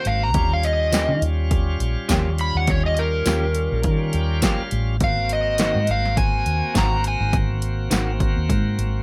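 A short, lightly reverberant cut of laid-back, rollicking straight-eighth soul blues at 103 BPM, where a dark, overdriven slide guitar carries the melody until 7.3 seconds over a shouting tonewheel organ through a slow rotary speaker that takes a fill from 3.8 to 5.0 seconds, a round foam-muted bass, a dry, punchy overdriven analog drum machine with tambourine, and compressed clean guitar stabs bathed in lush chorus, moving from Eb9 to Ab9.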